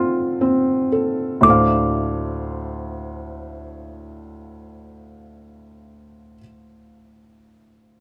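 A wistful, gentle children's lullaby in free time opens on a Dm7 chord, with a tinkling, slightly out-of-tune music box carrying the high melody over an intimate, felt-muted upright piano accompaniment that sits up front, the opening slowing down until 1.4 seconds, the music box falling away at 6.4 seconds, and the piano continuing alone to 8.0 seconds, heard through close, detailed microphones with light reverb.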